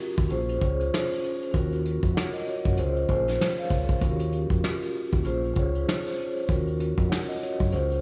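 A vibraphone played with soft mallets rings out up front, its mellow metallic tone run through cassette tape and filtered top and bottom so it sounds band-limited and vintage, with a medium motor vibrato shimmering across the chords. This is a dark, gritty boom-bap hip-hop excerpt at 97 BPM in 4/4, swung on the sixteenths, cycling through Bbm7, Ebm9 and Eb9. A vintage brush kit sits close as well, lo-fi and muffled with a rolled-off top, pairing a punchy kick with a medium-tuned snare, rim clicks and hi-hat. A deep dub fingered electric bass enters at 0.2 seconds, round and dark, holding down the low register between Bb1 and Gb2. A lush hall reverb with a 2.7-second tail bathes the whole mix, giving it a dreamy, soaked studio ambience.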